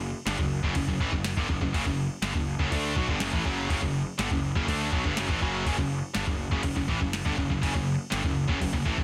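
Heavy metal with a dark, aggressive mood, this fragment stacks three bright, distorted guitar riffs set back in the mix, one of them high-gain and another double-tracked and overdriven, over a growly, fuzz-laden picked bass in F#m, while an up-front analog rhythm box with a deep kick, crisp snare and crash cymbal enters at 0.3 seconds in a dense, heavily limited modern master with digital ambience.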